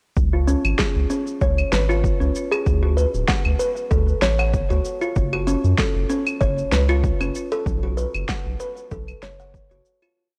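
Organic downtempo at 96 BPM in F# harmonic minor, meditative and mystical, built on a lightly swung 4/4 groove that runs from 0.2 seconds to the end at 10.2 seconds, fading out from 6.8 seconds. A round, deep analog bass plays a dotted-rhythm line up front, under a punchy yet soft electronic kick and a layered beat of shaker, claves and fat snare. Over them a woody, hollow kalimba repeats a 32-step arpeggio sequence through a low-pass filter sweep and tape echo, while the dry, gritty recording carries transformer saturation and cassette tape character.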